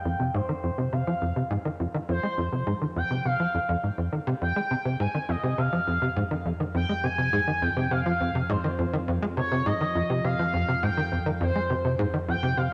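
A warbling, vintage analog drone fades in on F2 with chorus, as a smooth, mellow lead glides with portamento and vibrato between C5 and Ab5 through lush chorus and delay. From 0.1 seconds a tight, punchy sequencer bass drives a riff up front spanning F2 to Ab3, its ring-modulated sawtooth and square tones plucked by a filter and set in lush chorus and delay. Cut from a longer piece, this hypnotic, cosmic space music holds on F minor at 103 BPM in 4/4, bathed in a moderate plate reverb with a cassette-tape character.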